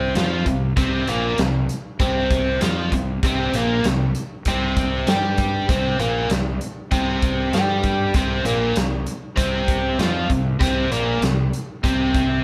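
A straight 4/4 pulse drives this brooding, gritty slice of blues rock and southern rock, cut from a longer piece and played by a power trio live in one room. A biting overdriven guitar carries the riff from the first moment to the end at 12.4 seconds, picked, double-tracked and sitting up front in the mix. Beneath it, a fingered electric bass with fuzz and overdrive holds down the low end, its tone direct and amped with a punchy edge. A big acoustic rock kit enters at 0.2 seconds with hi-hat, a punchy kick and a medium-tuned snare, sounding dark and smooth in a big room. The whole performance sits in a wet stone room reverb that gives the trio a heavy, enclosed presence over a C5 power chord.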